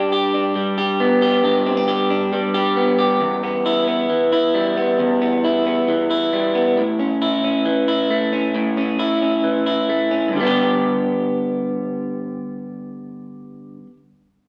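An electric guitar played through a small old amp carries this short indie pop excerpt, sounding twangy, slightly broken-up and lo-fi, with a vibrato effect shimmering over its picked notes. Sitting up front in the mix, it ranges from E2 up to G4 across the full 14 seconds. The mood is nostalgic yet bright, moving at 135 BPM in a straight 4/4 feel in G major. The harmony starts on G, shifts to E minor at 3.2 seconds and to A at 6.8 seconds, then returns to G at 10.3 seconds. A wet, large studio reverb surrounds the guitar, giving the impression of a band playing live together in one room, and the clip is cut from a longer piece.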